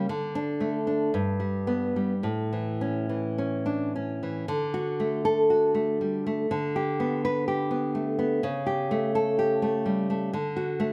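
Tender and sunny, this brief excerpt of a romantic solo classical guitar piece in 2/4 unfolds with a free rubato feel, its full-bodied, up-front nylon-string guitar fingerpicked between G2 and B4 with audible finger squeak and light reverb, moving through G and A chords before a new phrase at 4.5 s passes through G/D and A7/C# to settle on D at 10.3 s.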